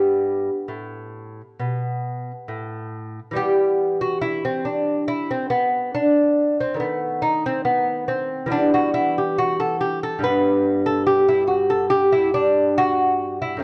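The recording has the worn, warbling character of old cassette tape, with a warbly pitch drift wavering through it, set in a moderate scoring-stage reverb that lingers for almost two seconds. A solo lute sits up front throughout this 13.6-second fragment of a longer piece. Its fingerpicked nylon double strings, some doubled at the octave, sound delicate and warm across a range from F#2 to B4. The baroque-style dance moves at 70 BPM in 4/4, played with a free, rubato feel. It begins in G major, then turns toward E minor at 3.4 s, passing through B7b9/D# before coming back to Em and finally G. The mood is radiant and serene.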